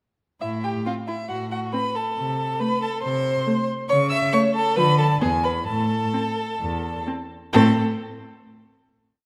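At 0.4 seconds, a quick, restless and dramatic classical-period string quartet piece opens with a rich, smooth first violin singing the melody with vibrato. A close, up-front second violin doubles the tune an octave below, and a focused cello marks the bass on the beats and sustains low notes. At 0.9 seconds, a clear viola joins with after-beat and sustained chords, and the short piece lands on a final chord at 7.5 seconds inside the wet reverb of a scoring stage.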